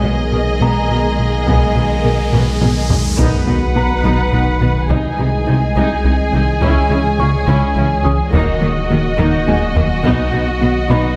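Brooding and vast, this cinematic excerpt blends orchestral and electronic scoring at 70 BPM in 6/8. Lush bowed violins carry the melody and a distant second line over a soft-attack viola bed, very quiet cellos, a mellow, roomy French horn section that drops out by 2.9 seconds, and double basses entering at 3.2 seconds. Meanwhile, a glassy FM pad with ensemble chorus sustains chords, a felt-muted upright piano with tape echo adds texture, and a round, tine-like thumb-piano-like synth pluck weaves arpeggios. Underneath, a rubbery square bass riff and a deep, saturated sub bass anchor the low end, an electronic riser and sub drop lands in an impact at 3.2 seconds, and a band-limited taiko ensemble struck with hard sticks adds fills, all set in a moderate scoring stage reverb.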